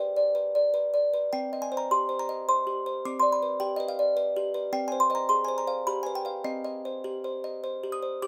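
Closely miked and nearly dry, this short excerpt puts a solo music box up front, its small-box tone delicate, bright and tinkling as it spans C4 to Eb6. It is an eerie, wistful classical lullaby in C minor, at 104 BPM in a straight 3/4, tuned to A4 = 438 Hz. The harmony moves from G to Cm, through G7/C, Fm/Ab and G7, and settles back on Cm at 6.5 seconds.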